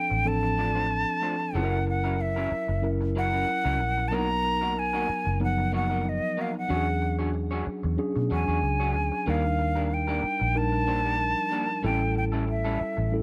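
A lightly swung sixteenth-note groove in 4/4 at 93 BPM carries this smooth, silky soul passage, cut from a longer piece. Up front, a jazz flute sings the melody with an airy metal tone, soft attack and expressive vibrato. Beside it sits a dark, round, foam-muted electric bass, amped and fingered in its low register. A mellow, clean tine electric piano plays the accompaniment through its built-in speakers, while an electric guitar through a small old amp picks a twangy, slightly broken-up riff further back. The harmony drifts from Dm7 through F#7, Bmaj7, E13 and Ebmaj7 before landing on A7 near 11.8 seconds. Light reverb and a digital ambience give the whole 13-second passage a gentle sense of space.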